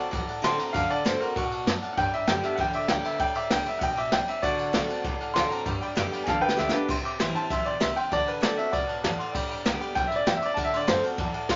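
Rockabilly at a driving 195 BPM in G major, this rollicking, rowdy clip from a longer piece puts a brilliant upright piano up front on the melody, its woody tone carrying audible action noise and long sustain, while a full-bodied picked dreadnought acoustic guitar and a jangly, metallic tack piano fill in the accompaniment. A brushed drum kit with a punchy kick, dark cymbals and a high-tuned snare sits up front beside it, and a thumpy gut-string upright bass plucks along in the background, all in a small, moderately reverberant room with a softened top end. A drum fill at 6.3 seconds leads into a new section at 6.9 seconds that moves through C, D7 and G before landing on D7.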